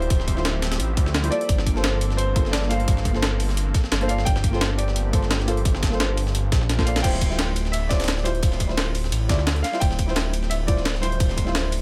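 Rolling breakbeats with a light 16th-note swing drive this soulful liquid drum and bass at 173 BPM in D minor: a tight, tape-warmed electronic kick and two gritty, compressed sampler-style breakbeat kits with high-tuned snares (one with filtered hats and snare) sit under a menacing, saturated detuned saw bass up front, while dark, nasal chord stabs with chorus and delay and a clear concert grand piano melody with tape echo move over Dm11 and Gm11, and a smooth chorused pad drops out at 7.0 s just after a short drum fill.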